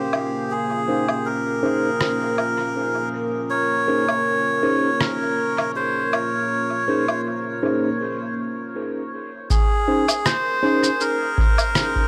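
A reedy, breathy melodica sits up front in this hazy ambient dub excerpt, carrying the melody through a dub echo over a deep, unhurried 80 BPM groove in Bb minor with a light swing on the sixteenths. Beneath it, a warbling, nostalgic tape-like pad holds sustained chords with chorus and its own reverb, while a mellow tine electric piano adds stabs coloured by vintage 12-bit sampler grit, a low-pass filter and more dub echo. Muffled, pitched-down electronic woodblock, rim click and shaker give a compressed, sampler-style pulse, also sent into the echo. A very quiet bubbling texture of resonant sawtooth filter steps drifts high above until 8.0 seconds, when a short break opens. At 9.5 seconds an overdriven analog kick drum arrives up front, anchoring the closing stretch, all of it set in a huge ambient reverb that hangs on a Bbm11 colour.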